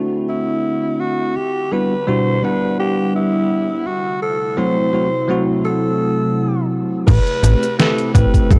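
A bell-like tine electric piano and a warbling, detuned tape-like pad open this melancholic, nostalgic vaporwave excerpt at 84 BPM with a light swing, moving through D9, Em9 and F#m7b5 chords while a filter sweep shapes the pad. From 0.3 seconds a raspy, growling alto saxophone carries the melody up front, its vibrato roughened by 12-bit sampler grit and trailed by tape echo. At 7.1 seconds, as the harmony lands on Am9, a snappy, metallic FM bass, a thumpy electronic kick and a muffled, detuned 8-bit drum machine with snare, hi-hat, cabasa and crash come in, all under a light reverb and cassette-tape haze.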